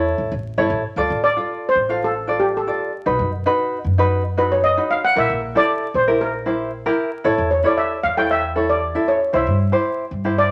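A mellow, shimmering steel pan played with medium rubber sticks carries the melody up front and solos from 1.0 s in this brooding calypso excerpt at 115 BPM in 4/4, backed by a light, thumb-plucked acoustic tenor ukulele and a woody pizzicato upright bass with steel strings, moving through A, Dm, B7, Edim/Bb and C within a wet studio reverb and a layer of vinyl crackle.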